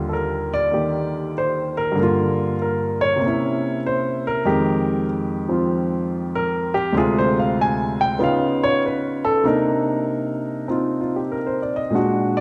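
Solo jazz with a sophisticated, swinging feel at 96 BPM, this 12.4-second piece of a longer performance features an intimate, up-front grand piano with audible action noise, voicing rich chords such as Ebmaj9, C7b9, Fm9, Db9 and Cm9 across a range from D2 to Ab5, set in the natural resonance of a reverberant recital hall.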